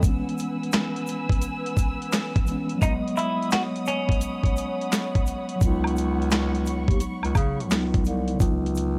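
Lo-fi hip hop with a reflective, melancholic mood, this excerpt opens on a dusty, sampler-style drum kit, up front and overdriven with 12-bit grit, a thumpy kick, medium-tuned snare, hi-hat and handclaps, swung in 4/4. From the first beat, a mellow tine electric piano plays filtered, clean accompaniment through built-in speakers, while a lush, bowed studio string section holds sustained chords above it until 8.4 seconds. Quietly in the background, an egg shaker and woodblock add close, dry acoustic texture. The harmony moves from F#9sus4 to C#9sus4 at 2.8 seconds, where a semi-hollow electric guitar enters with a picked, compressed melody softened by subtle chorus and a low-pass filter. A close-miked bass clarinet sounds briefly at the start, then returns at 5.6 seconds with a jazz-style line full of vibrato, all within a small, lightly reverberant room.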